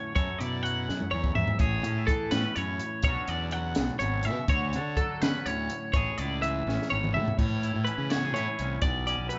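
A bright, up-front twelve-string electric guitar spins clean, twangy arpeggios over a compressed, slightly broken-up electric guitar from the first instant, joined at 0.2 seconds by a round, fuzz-overdriven fingered bass and a dark, smooth compact cocktail drum kit with a high-tuned snare and punchy kick, carrying this playful, intricate math rock and midwest emo fragment in 6/8 through lush seventh and ninth chords, two drum fills and a fresh passage at 7.4 seconds, all heard as a band playing live in one room with moderate large-studio reverb.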